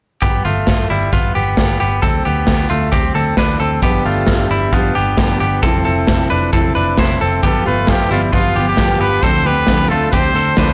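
A blown-out, overdriven recording with light reverb carries this breezy, nostalgic jangly indie pop excerpt. A bright, twangy clean electric guitar plays arpeggios through plate reverb and delay, over a round, foam-muted picked bass and a gritty, punchy garage drum kit in a small, pumping room. A full-bodied fingerpicked steel-string acoustic guitar joins at 3.8 seconds, and at 7.5 seconds a present, vibrato-laden trumpet takes the melody up front with plate reverb and delay, as the chords move among G7, Dm7 and Fmaj7.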